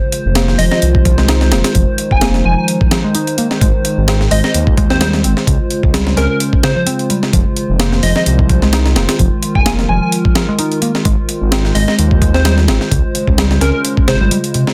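A gritty, sampler-style breakbeat kit with a thumpy kick and high-tuned snare sits up front in this raw, funky breaks excerpt, alongside a rumbling detuned saw bass, a round dub electric bass riff with tube saturation and delay, a punchy plucky unison lead given a telephone sound and delay, and a warbling, lo-fi tape-like pad whose chorused chords pump under sidechain through Fm7, Ab6 and Dbmaj7 in a dense, heavily limited mix.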